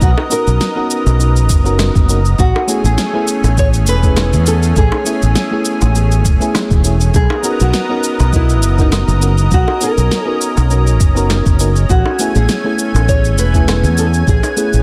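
A dark, fingerpicked nylon-string guitar melody with tape echo opens this blissful, relaxed sunset chillout excerpt at 101 BPM in B major, alongside a thick, detuned sawtooth pad with chorus, a round, up-front fretless electric bass, a soft, tape-warm electronic kick, and an electronic shaker and fat snare, all riding swung 16ths over a drift between Bmaj7 and Amaj7, with tight, high-tuned bongos entering at 0.2 seconds and a mellow FM electric piano with chorus and delay at 0.3 seconds, set in light digital ambience and a dense, heavily limited modern master.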